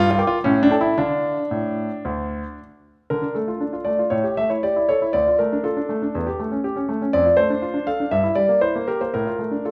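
A clear concert grand piano sits up front in a wet recital hall, its reverb lingering for about 1.3 seconds, while the audible action noise lends the recording an intimate feel. This is a short passage cut from a longer classical-period sonatina in D minor, played solo in 4/4 at roughly 111 to 122 BPM with an elegant, playful rubato. The polished tone spans from a deep bass at D2 up to D6, keeping the instrument present across its range. The opening phrase moves from A7 to D minor, then begins again at 3.1 seconds and unfolds through A5, D minor, A7/E, Dm/F and Edim/G. It settles on Dm/A near 9.1 seconds, just before the passage ends at 9.7 seconds.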